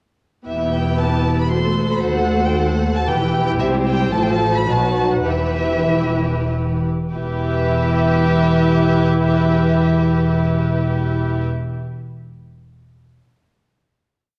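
This is a brief, complete classical-period movement for symphony orchestra in E minor, urgent and dramatic, moving quickly in 3/4 at 92 to 119 BPM with a rubato feel and tuning slightly below standard pitch. From 0.5 s the whole string body sounds at once: the first violins carry the melody high in their range, soft-edged and bowed sul tasto with light vibrato, while the second violins and the dark violas hold sustained tremolo chords beneath. Cellos give a pure, floating bass line, and the woody, smooth-topped double basses double it far below with vibrato. The harmony turns through diminished and half-diminished colours to a dominant seventh before settling back on E minor, and the theme slows from 2.8 s to 7.1 s, where the ensemble arrives on a final chord that rings until 10.8 s. The sound is intimate and close, set in a scoring-stage reverb and coloured by worn, warbling cassette tape with a wavering pitch drift.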